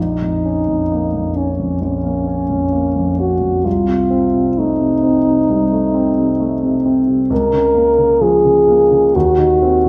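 A wet recital hall reverb, lingering for 1.3 seconds, surrounds this solemn, melancholic romantic classical duo, cut from a longer piece and played with a flexible rubato feel. Up front, a mellow French horn carries the melody with light vibrato and a smooth top, while an intimate concert grand piano accompanies with deep bass, long sustain and audible action noise. Both instruments play together throughout the 9.9 seconds.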